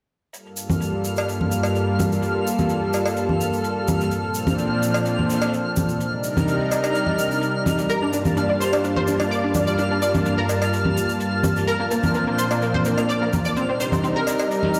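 Dreamy yet driving, this progressive house piece cut from a longer track moves at 127 BPM in G minor, with a thick, detuned sawtooth pad sustaining up-front chords from Gm7 through Bbmaj7 and Cm7, while close, ringing congas and cowbell, a grainy shaker, a dark, very quiet soul kit, a barely audible overdriven electronic hi-hat and a twinkling granular shimmer around F6 fill the lush hall, until a round, detuned analog pluck enters at 7.9 seconds with chorus and tape echo on its arpeggios, all heard through a big system in a bare stone room.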